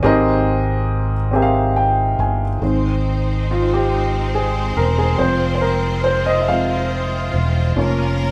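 This gospel piece in Ab major feels jubilant and soulful, moving at a slow 47 BPM counted in dotted quarters across a straight 6/8 feel. A dark upright piano with a woody tone and audible action noise sits up front. It carries the accompaniment, adds a fill at 1.3 seconds, then takes a solo from 2.6 seconds onward. A fingered electric bass with a round, punchy, amped sound anchors the low end throughout. At 2.6 seconds a lush bowed string section with vibrato joins, holding sustained chords at a lower level in the mix. The harmony opens on a rich Abmaj9 before settling through Ab, Fm and Bbm/F, and a moderate large-room reverb gives the live ensemble a shared, spacious sound.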